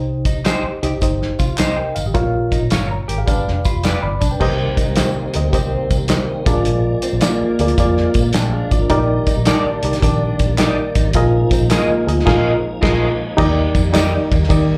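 A reedy, worn electric piano sits up front in this uplifting 1960s-style soul groove, its slightly out-of-tune tone carrying overdrive, tremolo, plate reverb and slapback echo, and it plays a fill at 3.3 seconds. Beneath it, a cloth-damped, thuddy drum kit with dark cymbals and a tight kick swings alongside a round, foam-muted bass, a twangy guitar riff, warm chorused guitar stabs, and distant tambourine, shaker and group handclaps, while a full tonewheel organ with slow rotary speaker enters at 4.4 seconds to hold sustained chords in the background. Heard as a live club gig through the venue's PA, this cut from a longer piece features a band accent at 12.3 seconds.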